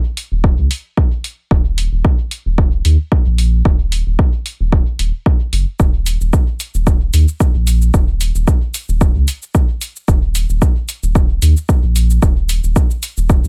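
A dry, close-sounding dub techno excerpt with a cavernous, hypnotic mood, where an up-front, deep electronic kick with a tape-warm, small-room character anchors the 4/4 pulse, a round, dark analog bass with sine-like sustain pumps through sidechain compression, and a quieter layered electronic hi-hat and cabasa adds a lightly swung top layer from 0.2 seconds to the end.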